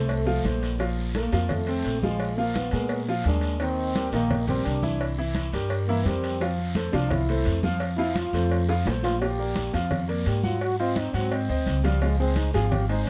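A dark, lightly reverberant production frames this sophisticated, danceable Afro-Cuban jazz at 171 BPM in F major. A mellow trombone carries the solo throughout with light vibrato and scooped notes, over a warm grand piano whose chords move from Bbsus2 through Ebmaj7 and Fmaj7 to Dbmaj7, while a growly, woody pizzicato upright bass sits up front. Thick-skinned congas played with hard hands stay in the background, joined by tight, high-tuned cowbell and bongos and a raspy, distant guiro, with a brief fill at 8.7 seconds leading into a second pass of the opening section.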